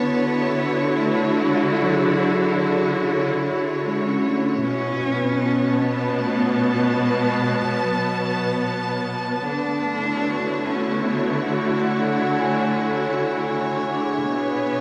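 A straight, unhurried 3/4 pulse at 75 BPM carries this serene ambient passage in D lydian, tuned slightly low to A4 = 438 Hz and cut from a longer piece. Up front, a clear, focused studio string section holds bowed ensemble chords with vibrato, moving from Dmaj7 to B5, back to Dmaj7 and settling on Bm. A single cello sings the melody in an intimate, close voice, played sul tasto with an airy bow, soft attack and light vibrato, lightly echoed by analog delay. In the background, a vibraphone struck with medium hard mallets, motor off, rings out metallic arpeggios from 0.7 s to 7.0 s, then returns at 11.6 s, also touched by analog delay. Cassette tape colours all three parts, giving the home recording a gently worn, warm character inside a wet but short studio reverb.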